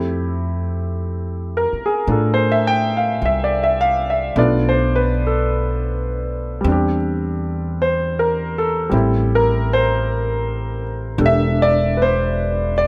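A clear, natural concert grand piano sits up front, its deep bass supporting unhurried swung chords that move from Fmaj9 through Bm7b5 and C13/E to Am7 in this romantic, intimate jazz ballad. Beneath it, an upright bass plays woody pizzicato lines on steel strings, also close and present. Light reverb gives the pair a soft sense of space in this short passage cut from a longer piece.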